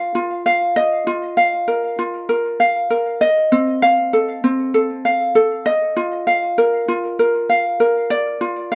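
In a straight 4/4 feel, this short folktronica cut features a lone fingerpicked acoustic ukulele, light and up front, moving through Bb, Ebsus2 and F7 from 0.0 to 8.8 seconds with a warm, playful mood, captured in a dry, close 1970s-style studio sound.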